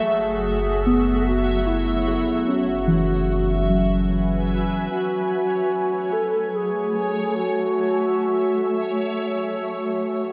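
Spacious and melancholic, this ambient passage in 3/4, cut from a longer piece, sets a pure, distant alto flute melody with vibrato and diffuse delay over a shimmering, ethereal pad, muted felt-like synth key arpeggios that warble through chorus and delay and fade in from 4.9 s, and a reversed, swelling granular texture, while a deep, round sub bass holds beneath until 4.9 s, inside a wet concert hall reverb.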